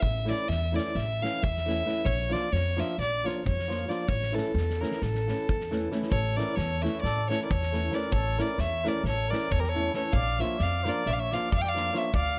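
A clear, close fiddle leads this fiery, virtuosic excerpt of Balkan wedding-band folk in 9/8 with smooth, even bowing and light vibrato, over a woody, thumpy pizzicato upright bass, fingerpicked flamenco guitar with audible finger squeak and a loose acoustic drum kit with a fat snare and punchy kick set back in a small, pumping room, while a mellow, distant trumpet with jazz-style vibrato joins as a second line at 6.1 seconds, all in light reverb.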